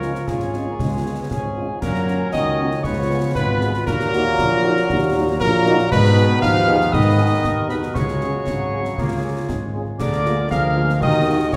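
A festive, spirited military-style march for wind band in a straight 2/4, heard in a short cut from a longer piece and set in a wet recital hall with a 1.7-second reverb. A cornet carries the melody with light vibrato over a dark, close-miked tuba bass, while a vibrato-rich euphonium and a background woodwind section add second lines, a pure, wooden piccolo joins at 1.3 seconds, and a very quiet, mellow horn section and a distant, roomy trombone section supply accompaniment and sustained chords. Close, dry concert snare, bass drum and dark-toned clash cymbals drive the march as the harmony moves through minor chords and a suspended chord before closing on D# minor.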